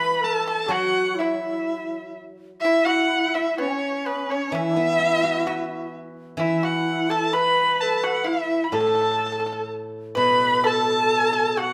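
Festive yet graceful, this short excerpt of Chinese traditional chamber music moves at a slow, rubato 64 BPM in 2/4, cut from a longer piece. The erhu carries the melody up front, its rich bowed tone shaped by vibrato, soft attacks and expressive portamento, though it sounds slightly distant. Beneath it, a breathy, bright end-blown bamboo xiao with lifted highs, a dark, husky horsehead fiddle with woody character, and a mellow, dry, percussive pipa played with fingerpicks weave second lines in the background. A steel-string zither, also fingerpicked, supplies silvery, ringing accompaniment. All five parts play throughout, in a moderate recital hall reverb, with a brief new section arriving at 10.2 seconds.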